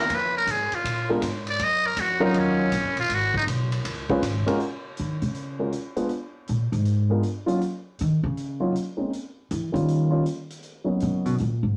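A metal-muted trumpet opens this cool, moody piece of small-group swing and bop, playing a buzzy, raspy melody with vibrato, scooped notes and a growling edge, close-miked and up front until it stops at 3.4 s. The tempo is a brisk 159 BPM in 4/4 with a swung eighth-note feel, and the harmony moves from Eb minor to F# major at 4.6 s, where the pizzicato upright bass takes over as the soloist. That bass, woody and dark with steel strings, sits up front throughout. A dark baby grand piano enters at 1.1 s with mellow, intimate accompaniment, its action noise audible. At a lower level, a big-room drum kit keeps time on hi-hat, ride cymbal and a punchy kick. A wet studio ambience surrounds the group in this cut from a longer performance.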